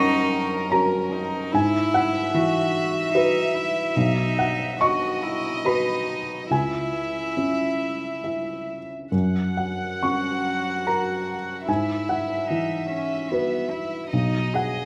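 A triple metre, stretched and relaxed by rubato, carries this intimate, hopeful neoclassical passage for piano and strings, cut from a longer work. A felt-muted upright piano sits up front with a soft, mellow, short-sustained accompaniment spanning deep bass to high treble, while a warm chamber violin section sings the melody with light vibrato and a gentle sul tasto touch. A single cello, clear, nasal and floating, traces a second line beneath, all three parts playing throughout the 14.9 seconds inside a moderate recital-hall reverb.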